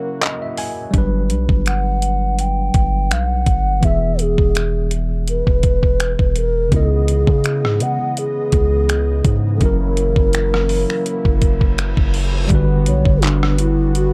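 Dark, digitally ambient production frames this smooth, tender contemporary R&B excerpt, where a breathy, hollow clay ocarina with vibrato and delay carries the melody over a worn, slightly out-of-tune tine electric piano that opens with a short fill, a detuned, wave-folded analog pad with chorus that returns at 6.7 seconds, an overdriven 8-bit drum machine of thumpy kick, snaps, claps, hi-hat and rim click sitting up front beside a deep, sine-toned 808-style bass that enters at 0.9 seconds, and a brief electronic reverse cymbal at 11.4 seconds.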